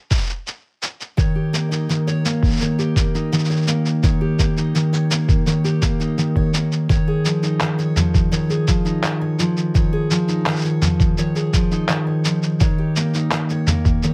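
A straight 4/4 pulse at 84 BPM anchors this pastoral, delicate folktronica excerpt in Eb mixolydian, led by a muffled, thumpy electronic kick that sits up front, pitched down and compressed like a sampled hit re-recorded in a small room. Beneath it, a lo-fi sampler-style kit adds handclaps, shaker and toms, with the same pitched-down, tape-warm character set lower in the mix. At 1.2 s a picked steel-string acoustic guitar enters with arpeggios between Eb3 and Db5, its full-bodied dreadnought tone placed close and touched by delay, with audible finger squeak. The harmony rests on Eb7, moves to Db/Eb at 6.9 s and returns to Eb7 at 12.6 s. A moderate studio reverb gives the whole a gentle sense of space.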